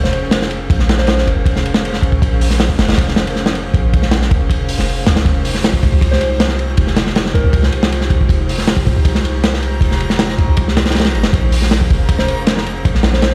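A crunchy, saturated breakbeat kit with dark cymbals and a tight kick drives this dark, frenetic drum and bass excerpt over a deep, sine-toned 808-style bass and an airy, detuned pad moving through Bbm7 and Fm7, while a round, keys-like FM lead with chorus and dub echo surfaces in brief background phrases from 0.0 seconds and a reversed, granular swelling texture drifts in at 6.3 seconds, the mix sounding as if played on a big sound system in a bare room with large studio reverb.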